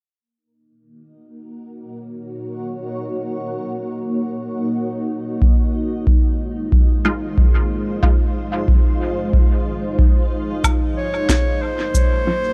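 Deep and spacious ambient dub, this excerpt opens on a blurred, detuned granular cloud pad under a filter sweep, joined at 5.4 s by an overdriven analog kick up front, then muted wave-folded dub chord stabs with phaser and echo, a woody electronic snare with cabasa and woodblock at 10.6 s, and finally a mellow solo clarinet echoing over a dark production.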